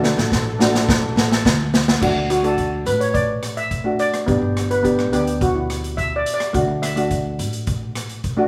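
A drum fill on a boomy, up-front street-band kit with dark cymbals opens this festive, carefree calypso excerpt, where a shimmering double-second steel pan takes a solo from 2.0 seconds over dark, smooth cello-pan chords, woody pizzicato upright bass and a chord move from D to G and Dadd9, all in a rough home-demo mix with small-room ambience.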